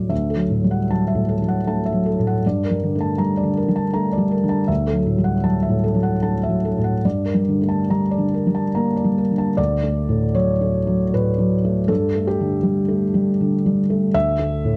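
Intimate and peaceful, this neoclassical minimalist piece for solo felt-muted upright piano drifts in a rubato 3/4 around 69-81 BPM in D major, tuned to A4 = 441 Hz and cut from a longer work. The thick felt gives the piano a soft, mellow tone, its action noise audible and close up front. Dadd9 and Gmadd9 alternate in the opening passage before a second passage at 9.6 s settles through D, Gsus2 and Dsus2, all within a dark production with light reverb.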